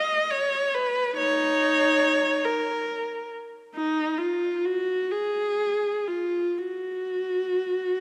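Yearning and mournful, this 8-second classical fragment features a single unaccompanied viola, bowed up close with a warm tone, soft attacks, vibrato and sliding portamento, phrased freely in 6/8 with expressive rubato and bathed in the long, wet reverb of a concert hall.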